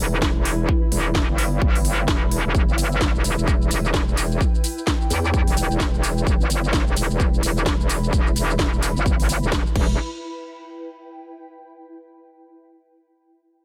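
Bass house with a gritty, aggressive mood and a swung sixteenth-note feel, built on a metallic wobble bass that sounds saturated, bright and up front with chorus, overdrive and sidechain pumping, beneath a cloudy, evolving granular pad that hangs blurred and detuned in its own reverb and pumps with the beat. A punchy, up-front electronic kick drives it alongside a tape-warm garage kit of cracking snare, crisp hi-hats, shaker and crash cymbal. The drums and bass drop out around 10 seconds, leaving the pad to drift alone until the cut at 11.8 seconds.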